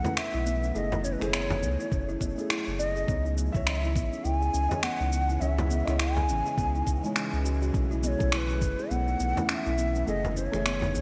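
A breathy, vibrato-laden ney carries the melody over a felt-muted upright piano with gritty sampler texture, a mellow, woody kalimba tracing arpeggios, a tense, string-like drone in the background and a deep, close frame drum, while a faint electronic impact flickers at 0.3 s. This hypnotic organic downtempo fragment moves at 103 BPM with a swung 16th feel, cycling from F#m7 to C#madd9 and back as overdriven electronic cabasa and finger snaps, a round sine sub bass and, from 1.9 s, a thumpy, compressed electronic kick push the groove. Sidechain pumping breathes through the piano, drone and bass, digital delay trails the ney, piano and kalimba, and a lush hall reverb gives the bright, 1980s-style digital production its glossy depth.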